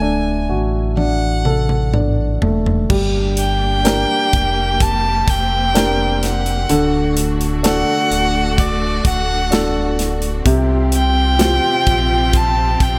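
Longing and heartbroken, this pop ballad opens with a bowed solo violin carrying the melody up front, its smooth, vibrato-rich tone trailed by delay, over a warm, polished baby grand piano and a deep, full sub bass doubled an octave above. A punchy, airy studio drum kit enters at 1.0 seconds with a fill, bringing a medium-tuned snare, toms and bright cymbals. At 2.9 seconds a distant string ensemble adds soft-attack sustained chords with expressive portamento, all set in light reverb and small room ambience.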